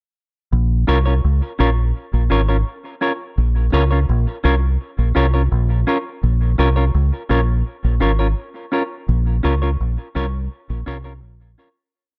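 A dark, lightly reverberant mix opens this hypnotic, laid-back roots reggae piece, where a round, punchy fingered electric bass carries a deep melodic line with rests over a single minor chord while a clean semi-hollow electric guitar, touched with tape echo, plays a double off-beat chop from 0.9 seconds through the fade-out that begins at 9.1 seconds.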